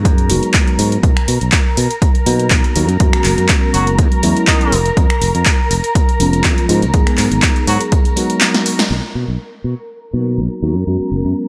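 A growly, punchy fingered electric bass sits up front in this joyful, sunny slice of filtered disco house at 122 BPM in B major, its sidechain pumping and low-pass filter shaping the groove with a 16th-note swing. An overdriven analog kick and a punchy drum machine supply snare, handclaps, finger snaps and hi-hat, both re-recorded in a large room and placed up front, with pumping on the hats and cymbals, while a very quiet tambourine adds faint maracas and group handclap colour throughout. A mellow, clean tine electric piano with phaser carries the accompaniment, and a veiled, con sordino violin section holds dark sustained chords roughened by vintage 12-bit sampler grit, both pumping under the filter. From 3.7 to 7.8 seconds, a brilliant horn section in octave doubling offers a pop-style melody in the background, trailed by dub echo. The harmony cycles through chords like G#m7, Bmaj7 and C#7/E#, and a drum fill leads to a band accent at 8.8 seconds before the drums drop away and the final passage settles on Bmaj7 and F#sus4 in light digital ambience.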